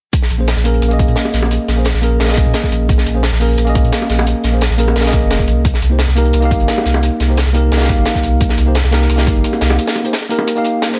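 A straight 4/4 drum and bass groove rolls along at 174 BPM. It is built from a punchy, layered electronic kick, a crunchy breakbeat kit of hi-hat and high-tuned snare with a dark, saturated, rolled-off top, and a gritty, pitched-up electronic hi-hat. This liquid piece sits in Bb dorian with a melancholic mood, moving from Bbm7 to Cm7 under light reverb and small room ambience. A deep, round sine sub bass sits up front beneath a clean tine electric piano heard through its built-in speakers and trailed by dub echo. Tight, high-tuned bongos played with soft hands add vintage colour in brief spots, most notably between 4.0 and 7.0 seconds. The kick drops out at 9.3 seconds and the sub bass at 9.8 seconds as a short break begins, leaving the kit, hi-hat, bongos and electric piano.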